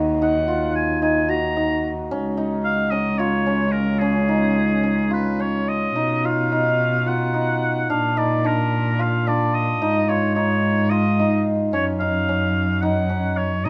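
A clear oboe carries the melody from 0.2 s, played in a classical solo style with light vibrato and a distant, roomy tone. This is restless, urgent contemporary chamber music in an uneven 7/8 metre, a fragment cut from a longer piece. Beneath the oboe, a hammered dulcimer spins shimmering, ringing arpeggios in a narrow middle range, while a single dark cello holds the bass with an airy, sul tasto bow, soft attacks, vibrato and an intimate closeness. At 6.0 s the music moves into a new section, with the harmony shifting from Ebm and Db toward B, Bb and Db/Ab before settling on Gb5. Close, detailed microphones and light reverb keep the trio present and finely drawn.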